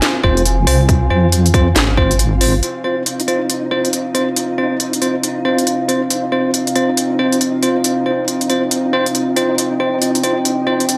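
Heavy and dark, this deep dubstep piece in F minor moves at 138 BPM with a swung half-time feel, as a saturated, up-front wobble bass and a tight electronic kick drive the opening until the bass drops out at 2.6 seconds, while a moody, detuned analog pad with subtle chorus, a garage drum kit with crisp hats and a cracking snare, bell-like electric piano stabs trailing dub echo, and a grainy, flickering texture in the background carry on through a moderate room reverb.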